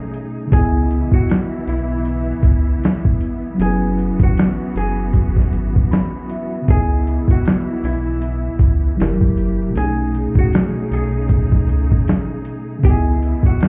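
Melancholic and hazy, this lo-fi hip hop excerpt swings gently in 4/4, its whole mix sounding muffled as if heard through a wall with a light club reverb. A mellow tine electric piano with cassette tape character and a lush bowed string section hold the chords from the start. A gritty, pitched-down boom bap sampler kit with a thumpy kick enters at 0.1 seconds, and a deep, up-front sub bass with octave joins it at 0.5 seconds to drive the groove. A dark, hollow-body archtop guitar carries a narrow picked melody over changes like C#m9, F#7sus4 and B13, and a very quiet jingly tambourine joins at 1.3 seconds.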